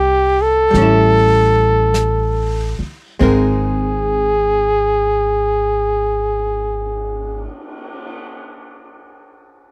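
A romantic, late-night jazz ballad excerpt in Ab major, swung at a slow 46-52 BPM and slowing down over the opening seconds, where a mellow, present trumpet with vibrato carries the melody up front, a dark, clean hollow-body archtop guitar and a woody, pizzicato upright bass accompany under Cm7, A7 and Abadd9 chords, and a softly brushed drum kit with dark cymbals and a boomy kick enters at 0.7 seconds, all captured in a dry, close 1970s-style studio sound.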